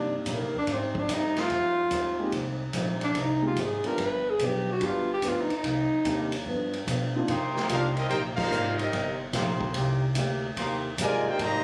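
Captured on a phone in a large studio with moderate reverb, this fragment of sultry, brassy big band swing moves at 146 BPM in C minor. A breathy, whispered tenor saxophone with vibrato and plate reverb carries the melody up front until 6.5 s, over a natural grand piano, a boxy picked archtop guitar in the background, woody pizzicato upright bass and a distant, roomy drum kit with a punchy kick. A tight, bright trombone section then holds sustained chords before a loose trumpet section with light vibrato takes the melody at 7.7 s, joined by a close-miked, clear trombone section on a second line, and the band hits an accent at 8.3 s.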